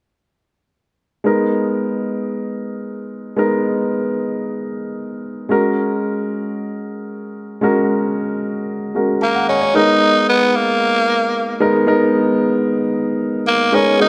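Bathed in a lush hall reverb, this short pop excerpt opens with a polished, up-front baby grand piano laying down moody accompaniment over G#madd9 and F#add9 chords from 1.2 seconds. At 9.2 seconds a raspy tenor saxophone takes the solo melody with gritty, edgy tone and vibrato, sitting present and forward in the mix. The mood is urgent and moody as the harmony returns to G#madd9 before the piece is cut off at 14.1 seconds.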